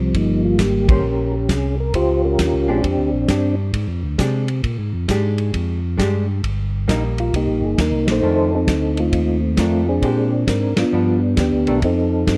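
A flute-like, percussive tonewheel organ carries the melody through chorus vibrato and a slow rotary speaker, pausing at 3.6 seconds and returning at 6.9, while a full, lightly overdriven organ bass, a dry, tight soul drum kit with dark cymbals and a clean, picked hollow-body jazz guitar keep this swinging, greasy soul jazz organ trio excerpt moving under light reverb in a warm production, with band accents punching through the groove.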